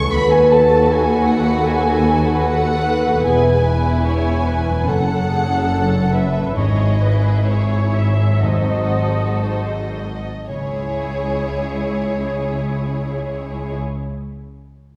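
Muted violins, violas, cellos and double basses open this solemn, melancholic classical passage in C# minor, their veiled, lush bowed tone carried by a very quiet, ringing harp in arpeggios over a rubato 4/4 pulse of 54-80 BPM. The violins sing the melody above a second violin line and viola accompaniment, while the cellos sit in the background and the basses anchor the low end; the tempo slows from 1.7 to 10.5 seconds through a progression leading to a G#7b9 chord. A close, dry, very quiet timpani enters at 6.6 seconds, and the phrase settles on C# minor at 10.5 seconds in the reverberant space of a church or concert hall, cut from a longer piece.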